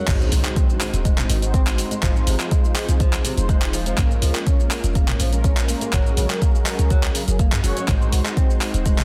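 Driving and spiritual, this afro house excerpt at 123 BPM in 4/4 drops in at 0.1 s with a deep, overdriven electronic kick and a layered, tape-warm deep house kit of hi-hat, shaker, handclaps, toms and crash cymbal, both re-recorded in a small room, while a very quiet electronic impact sounds until 2.0 s. A boomy, dark 808-style bass with a sine core and noise layer and round, detuned synth brass stabs with chorus, phaser and tape echo pump against the kick over an Ab7, Fm7, Bbm7, Gbadd9 progression. In the background, a fingerpicked flamenco guitar with finger squeak, gritty sampler texture and tape echo plays arpeggios beside a smooth, chorused analog pad, both also pumping, in a dry, dense and heavily limited modern master.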